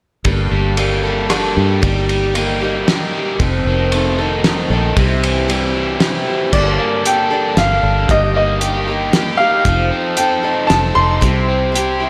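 Folk rock and heartland rock in a reflective, dusty 3/4 sway, this fragment of a longer piece sets a boxy, picked parlour acoustic guitar and a biting, double-tracked overdriven guitar riff, both with slapback echo, over a round, foam-muted fingered electric bass and a cloth-damped, thuddy drum kit with dark cymbals and a fat snare, before a clear baby grand piano enters at 6.5 seconds to carry the melody high above, all set in a lush hall reverb that gives a big arena sound.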